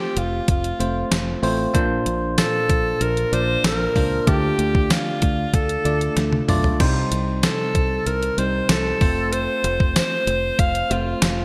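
Moody and dramatic, this 1980s-style pop excerpt sets a bright alto saxophone with light vibrato and a soft attack up front on the melody, its line trailed by delay, over a bell-like tine electric piano moving from F through Bbadd9, Dm and Cm back to F. A fingered electric bass, punchy and foam-muted, enters at 0.2 seconds alongside a clean 12-bit drum machine whose thumpy kick and fat snare ring out in gated reverb, joined by hi-hat, tambourine, crash and toms, with a drum fill at 6.2 seconds. The bright digital production sits in a moderate plate reverb.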